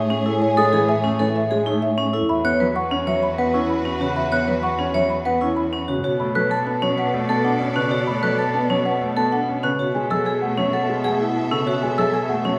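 Classical minimalist pattern music at 192 BPM in 6/4, this cut from a longer piece feels urgent and hypnotic, settling into B dorian from 6.0 s. A woody, dark marimba carries the melody from the opening, while a bright, metallic vibraphone with hard mallets rings out up front with fast motor vibrato, spinning arpeggios from 0.1 s. A bell-like, delicate celesta, close-miked and dry, adds sweet arpeggios higher up from 0.4 s, and a grand piano with a natural tone supplies accompaniment from 0.6 s. Around them, a lush studio string section holds smooth, even bowed chords, and a single bowed cello with vibrato anchors the bass. The harmony moves from Amaj7 and Esus2 into Bm7 and F#m7/B, all set in the reverberant space of a church or concert hall.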